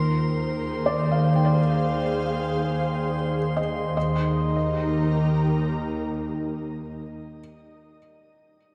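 Ambient music in a luminous, warm mood at 77 BPM in 3/4, this excerpt from a longer piece sits in Eb major, moving from Fm/Eb to Eb at 4.0 seconds. An ethereal, airy pad of detuned sawtooth and triangle tones with slow attack holds sustained chords up front with ensemble chorus and shimmer reverb. A soft felt-muted upright piano plays intimate arpeggios with audible action noise through tape echo, a lush bowed double bass section adds expressive vibrato beneath, and a glassy, drifting glass-harmonics texture shimmers until 4.0 seconds, all within an echo-heavy chamber reverb and small-room ambience.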